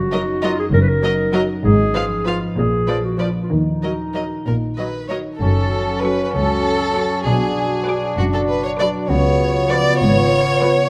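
A rich, focused chamber violin section sits up front with a bowed, vibrato-laden second line in this short cinematic cue, set in a slow 6/8 at 65 BPM. It has a magical, quirky character. Around it, a higher violin section carries the expressive melody, a lush viola section with portamento glides in the background, and a mellow, distant clarinet adds a second voice. A ringing, thumb-plucked concert harp spins arpeggios. A woody, dark double bass section, played close, and a more distant cello section anchor the low end. The music opens in Eb minor and moves to F# minor at 5.4 s, where a softly attacked bassoon with a vintage tone joins as accompaniment and a shadowy French horn section enters with sustained chords in the background. Moderate scoring-stage reverb surrounds the closely miked, detailed ensemble, and the excerpt is cut from a longer piece.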